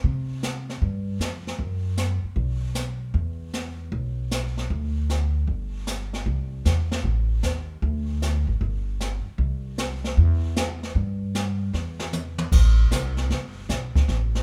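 A woody, pizzicato upright bass and an up-front brushed jazz kit with dark cymbals, a high-tuned snare and a boomy kick, captured in a small room, open together on this relaxed, warm swinging jazz excerpt in C major at 154 BPM with light reverb, until a drum fill from 11.7 to 12.5 seconds carries the pair into a new section that runs to the cut at 14.4 seconds.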